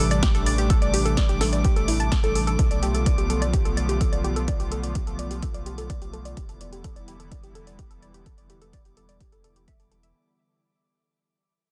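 A dense, heavily limited and dry mix carries this driving, dreamy progressive house excerpt at 127 BPM, where an overdriven electronic kick and a deep house kit with punchy snare and metallic hats sit under a round, sidechain-pumped analog bass, a breathy chorused pad holds Am7, Bm7b5 and Em7 chords, a crystalline wavetable pluck plays delayed arpeggios through a filter sweep, and a faint glassy harmonics texture drifts in the background as the whole fragment fades out over its 10.1 seconds.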